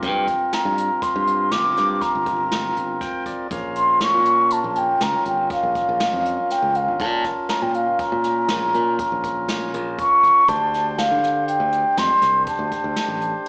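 This driving, intricate progressive instrumental opens with the whole band at once: a mellow, hollow baroque flute carries the melody up front over a percussive tonewheel organ, a growly fingered electric bass and a jazz kit played with brushes. The piece moves at 120 BPM in an uneven 7/4 with a straight feel, tuned to A4 = 444 Hz, and this short cut from a longer piece rests on Gm before shifting to Bbm at 3.5 seconds and a bare D7(no3) at 10.5 seconds. The wooden flute has an airy, straight tone with a soft attack and rolled-off highs. The organ sounds full and lightly overdriven, with third-harmonic percussion through a stationary speaker, and it adds a brief fill at 2.8 seconds. Beneath it, the punchy bass sits bright and direct, while the brushed kit pairs a medium-tuned snare with a boomy kick; the flute, organ and drums each carry a slapback echo. The sound is that of a live gig heard through the venue's PA, with club reverb, small-room ambience and a small-speaker character.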